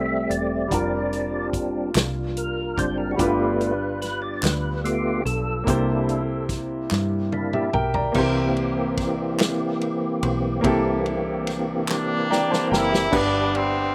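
Slow gospel in 6/8 at 48 BPM, reverent and jubilant, cut from a longer piece with little reverb around it. A percussive tonewheel organ leads with a solo through the first 8.2 seconds, fat and lightly overdriven with key click, chorus vibrato and a slow rotary speaker, sitting up front beside a clear baby grand piano that carries the accompaniment. Beneath them a deep dub fingered bass sounds round and foam-muted, while a soul drum kit, distant and roomy with dark cymbals and a punchy kick, enters at 0.3 seconds and adds fills, and a hollow group handclap joins at 2.0 seconds. A dark French horn section holds soft-attacked chords in the background as the harmony moves from Fmaj7 through G7 and C7. At 11.9 seconds a loose, pop-style horn section takes up the melody up front while the piano and drums play fills, settling on a G chord at 13.1 seconds.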